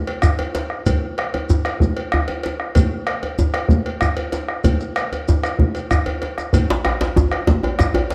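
A driving, festive 12/8 groove at 127 BPM in dotted quarters anchors this brief cut from a longer West African drum ensemble piece. A round, band-limited bombo and a medium-tuned djembe sit up front, while a grainy, mellow shekere plays close by and a metallic cowbell rings from further back. After a drum fill at 6.1 seconds, a second djembe joins at 6.7 seconds, all set in a moderate recital-hall reverb with a dark overall production.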